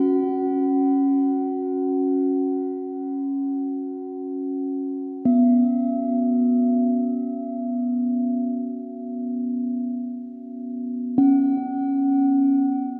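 In free time, this haunting, meditative world piece, cut from a longer work, is a 13-second solo for a bronze singing bowl, struck with a suede striker and close-miked up front so its full, metallic ring and slow beating carry through delay into a vast, echoing cathedral reverb that hangs for 5.5 seconds.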